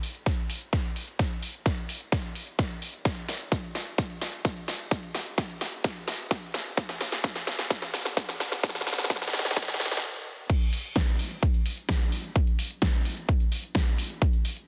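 Anthemic and euphoric, this EDM excerpt runs at 129 BPM in a straight 4/4, opening with a build-up and drum fill on a big-room dance kit whose huge snare, metallic hi-hats and crash cymbal sit up front under a filter sweep, joined at 0.3 seconds by a punchy, layered electronic kick. After a brief stop at 10.0 seconds, the drop lands at 10.5 seconds and carries the kit through to the end, with the kick dropping out just before, at 14.3 seconds. Light reverb surrounds a dense, heavily limited modern master.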